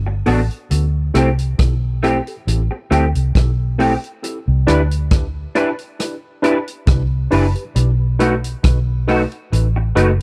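Lovers rock reggae at a relaxed 68 BPM in 4/4, with a light swing on the sixteenths, this short cut from a longer piece feels sweet and tender. A vintage muted fingered electric bass opens the passage, its dark, round, foam-muted tone sitting up front in a low register. An electric guitar through a small old amp plays stabs with a slightly broken-up, lo-fi, compressed character and an ensemble chorus, while a worn, slightly out-of-tune tine electric piano adds accompaniment, lightly overdriven and colored by tape echo. A vintage drum kit with hi-hat, rim click and a punchy kick has a rolled-off top and a touch of tape echo, giving a natural studio-room feel. The harmony moves from Gmaj7 and D7sus4 to Cmaj9 at 4.2 seconds and B7 at 7.8 seconds, all captured as a dry, close 1970s-style recording in small room ambience.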